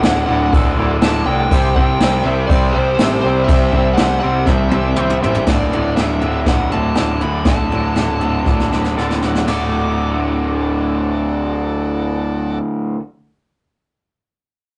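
This raw, swaggering garage rock excerpt opens at once with an up-front, double-tracked overdriven guitar riff, a fuzzy picked bass, a dark, compressed fuzz lead guitar carrying the melody, and a brushed drum kit in a small room with a boomy kick and dusky cymbals. A reedy vintage combo organ slips in just behind them, holding clean sustained chords with gentle vibrato in the background. At 120 BPM in a straight 4/4, the harmony sits in D mixolydian, moving from D to C and later back to D. Drum fills mark the turns between sections, and at 8.5 seconds the organ adds a fill of its own. The drums stop at 9.6 seconds, leaving the guitars, bass and organ in a rough rehearsal-room sound with tube saturation, light reverb and a dull top end.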